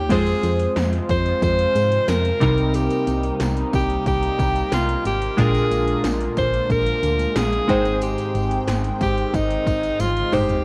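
1980s-style pop at 91 BPM in F dorian, nostalgic and moody, this short excerpt cut from a longer piece sets an up-front alto saxophone melody with light vibrato, scooped notes and tape echo over glassy, warbling digital keys with chorus, a swirling sawtooth pad in the background, and a round, dark FM bass moving through Fm, Cm7, Bb7 and Abmaj7. Electronic drums with a punchy kick, gated reverb on snare and toms, metallic hats and overdrive drive the groove alongside a jingly tambourine tucked behind, and a drum fill arrives at 10.0 seconds. It sounds like a home cassette recording in a lightly reverberant room, with tape coloring the sax and drums.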